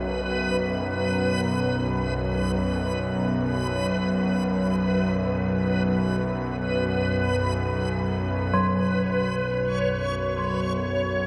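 In free time, this dark, cavernous ambient drone piece is cut from a longer work and opens on a Bsus2 chord, with a string-like, tense bowed-like drone sitting up front in the low register and a reversed, dreamy backwards swelling texture hovering high above. A deep, moody pad holds sustained chords very quietly alongside them until 8.5 seconds, when a ringing bronze gamelan-type metallophone enters with arpeggios on F#3 through a diffuse ambient delay and a filter sweep moves across the synth drone. The whole sits in a huge, wet reverb with a 7.4-second tail, tuned to A4 = 444 Hz.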